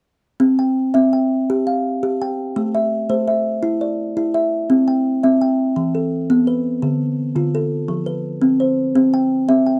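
Hypnotic and warm, this short excerpt of southern African traditional music in C major moves at 112 BPM in a straight 12/8, with a solo kalimba carrying a woody, hollow-box tone and mellow, ringing fingertip plucks up front from 0.4 to 9.8 seconds as it moves through C, Am, C, Em, Dm and F back to C, all captured in a dry, close 1970s-style studio sound with light reverb.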